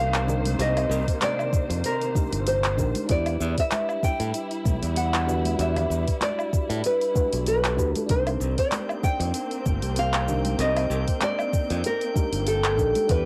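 Cut from a longer piece, this passage carries the character of a home cassette recording made in a small booth with a short, moderate ambience. It is a wistful sunset chillout groove with a gentle swing, moving between Cm9 and Em9 chords. A fingerpicked classical nylon-string guitar carries the melody through analog delay, while a bright, growly fingered electric bass sits up front beneath it. In the background a mellow FM electric piano adds round, warbling, full-bodied chords through chorus, and a lush, dark symphonic string section holds bowed, sustained chords with expressive vibrato. An overdriven deep house kit layers cabasa, handclaps, hi-hat and woodblock, a soft, tape-warm electronic kick joins up front at 1.1 s, and very quiet congas ring with hard hands. At 8.8 s a calm, glassy harmonics texture drifts in the background on a single high note, treated with chorus and its own reverb.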